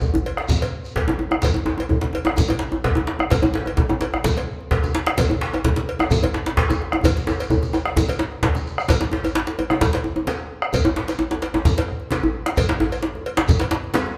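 Festive and earthy, this West African traditional drum ensemble plays in a straight 4/4 at 129 BPM, speeding up across its 14.2 seconds, cut from a longer piece. Two djembes are heard, one medium-tuned and up front, the other tight and cracking at a distance under soft hands, joined by a round bombo, ringing low-tuned congas struck with hard hands, a metallic cowbell and a grainy, mellow shekere. The band plays live together in one room with a large reverberant studio sound, and a drum fill from 7.0 to 8.9 seconds carries the music into its second section.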